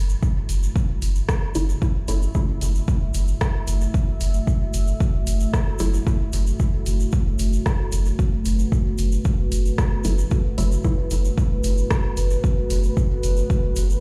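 Played back through a big sound system in a bare stone room, this deep, hazy dub techno excerpt has a dry core framed by the stone room's reverb. A clean, smooth sine sub bass and an up-front layered kick anchor a dark analog pad holding a single minor-seventh chord, its sawtooth and sub-octave tones shaded by chorus and phaser and pumping against the sidechain. Around them, an overdriven analog drum machine adds hi-hat and rim click through dub echo, a grainy, saturated tube shaker sits low in the mix, and a muted, detuned chord stab with a filter pluck arrives at 1.6, 5.8 and 10.0 seconds, trailing phaser and echo.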